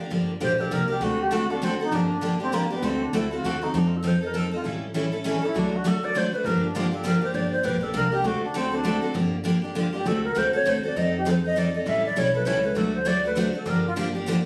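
Fiery and virtuosic, this excerpt of acoustic string swing in G minor moves at a brisk 199 BPM in 3/4, with an airy, vibrato-laden alto flute soloing up front, its crisp attack and lifted highs paired with an unsteady quality. A bright, full-bodied dreadnought guitar picks the accompaniment throughout with audible finger squeak and fresh strings, while a second jumbo guitar sits in the background and joins at 3.7 s and again at 11.0 s. Underneath, a woody, thumpy pizzicato upright bass on gut strings anchors the Gm7, D7, F7 and A7 changes, all set in light reverb with a casual phone-in-the-room quality.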